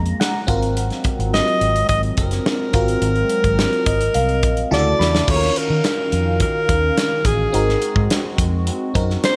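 A straight 4/4 groove at 106 BPM carries this bittersweet, slick slice of polished 1980s jazz-funk pop, with a punchy modern studio drum kit under gated reverb, bright cymbals and a drum fill at 4.7 seconds, over a dark, round, foam-muted fingered electric bass. A glassy, bell-like FM electric piano with phaser and chorus plays accompaniment and fills, while a hollow, flute-like pad holds soft sustained chords beneath, moving through Ab13, Dmaj9, Ebm9 and Ab9. From 1.3 seconds a warm alto saxophone takes the melody up front, with light vibrato, subtone and scooped notes in a jazz style, all set in a light studio reverb.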